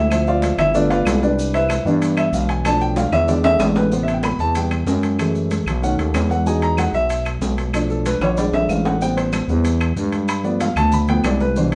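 Sophisticated and lively, this Afro-Cuban jazz excerpt moves at a brisk 189 BPM in a straight 4/4, cut from a longer piece. A baby grand piano with a natural, up-front tone carries a solo across the whole passage, moving through rich jazz harmony such as Dm7, G9 and Cmaj9 and later Bm7b5 and Bb13. Beneath it, a thick, growling FM bass with a fast attack and sustained notes sits up front in a low register. The percussion bed blends ringing, high-tuned congas in the background, ringing metal-shell timbales, woody, compressed and saturated claves, and grainy, mellow maracas that sound distant, as if in a large room. Drum fills arrive at 3.0 and 8.2 seconds, and the band plays live together in one room with moderate studio reverb, the whole mix topping out around 10.3 kHz.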